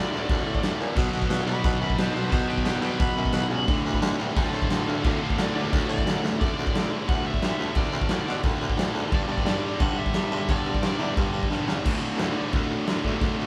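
A raspy, growling baritone saxophone carries the bass line in this upbeat, energetic punk rock excerpt at 176 BPM in D major, its gritty tone touched with light vibrato. A big, dark acoustic drum kit sits up front with a punchy kick, crash cymbal and medium-tuned snare, adding short fills. A biting overdriven guitar plays the melody until 11.1 seconds over picked riffs from a tight, bright distorted guitar, a very quiet double-tracked high-gain guitar, and a sludgy guitar that drops out between 6.4 and 9.1 seconds, all captured live in a small room with moderate ambience.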